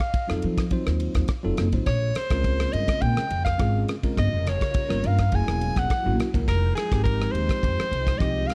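An edgy, forceful soprano saxophone leads this intense, driving electric jazz fusion excerpt, its vibrato-laden solo sitting up front with an analog delay, over a dry, damped 70s drum kit of tight kick, dark ride cymbal and rim click. A woody pizzicato upright bass and a bell-like, clean tine electric piano join at 0.3 seconds, moving through rich minor and altered chords, while a very quiet, lush string machine with phaser and ensemble chorus adds sustained chords from 1.8 seconds. The production is dark and warm with light reverb.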